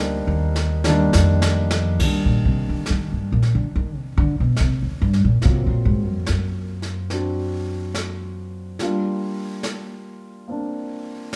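A wet, roomy live-band sound frames this smoky, wistful 71 BPM swung jazz ballad excerpt, where a warm, up-front grand piano comps through Cm9, Ab13 and Gm7 while brushed drums with dark cymbals and a boomy kick enter at 0.6 s with a fill, and a woody, growly pizzicato upright bass takes the spotlight with a solo from 2.0 s.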